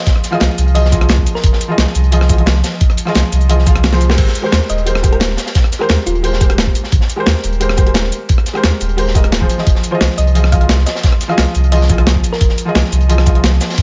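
A deep, round sine sub bass sits up front beside a thumpy, gritty electronic kick, anchoring this warm, dreamy liquid drum and bass excerpt at 175 BPM, moving from Fm7 to Abmaj9 and back. A soft, felt-muted upright piano with audible action noise and tape echo carries the accompaniment throughout, while a tape-warm sampler-style breakbeat kit of snare, hats, rim clicks, shaker, toms and crash is layered with a saturated, high-passed breakbeat kit tucked in the background, and the kick drops out for a drum fill between 3.8 and 4.2 seconds. A tine-like, thumb-piano-style FM pluck with chorus and digital delay floats in the background in brief melodic phrases, the first starting at 0.0 seconds, with a dry, dark overall sound.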